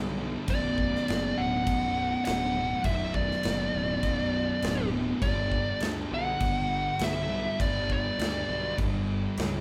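A straight 4/4 pulse at 101 BPM drives this brooding, sludgy stoner and doom metal excerpt in B minor, with the chords moving from Bm at 0.5 seconds to G at 5.2 seconds. Two thick fuzz guitars play the riff, one dark and sitting in the background with distortion, the other warm and very quiet, while a bright, growly overdriven picked bass holds the low end and a big acoustic rock kit with a punchy kick, medium-tuned snare and crash cymbal enters at 0.5 seconds. Up front, a dark, distorted fuzz lead guitar carries a high melody until 8.8 seconds, all heard as a band playing live in one room with moderate large studio reverb.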